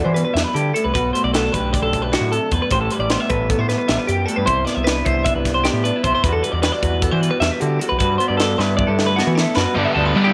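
Math rock and midwest emo in 9/8 at 306 BPM counted in eighths, this bright, intricate passage in G major sets a twangy, clean twelve-string electric guitar playing up-front arpeggios with spring reverb against a lo-fi, slightly broken-up electric guitar through a small old amp, its accompaniment tinted by subtle chorus. A round, growling picked bass with overdrive and a crisp fusion kit with a high-tuned snare and tight kick carry the chords from Em11 through Bm7, Am9, Cmaj9 and Gmaj9, with a drum fill from 8.6 seconds. At 9.7 seconds a crunchy, double-tracked overdriven guitar riff enters up front as the harmony settles on G6, the mix sitting in light reverb and small room ambience.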